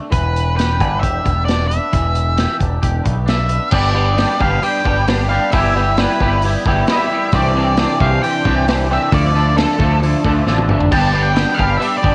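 A clean, twangy electric guitar riff opens this jangly, wistful indie rock excerpt, colored by ensemble chorus and cassette tape, and almost at once a dark, fuzzy lead guitar melody with distortion and tape echo joins a bright, overdriven picked bass and a vintage acoustic drum kit with dark cymbals and a punchy kick. The chords move from Em7 through G, Em/G, Cadd9 and Dm, landing on G at 10.9 seconds just after a short drum fill at 10.5 seconds. The mix sits in studio reverb with a home-cassette character, the growling bass and twangy guitar up front.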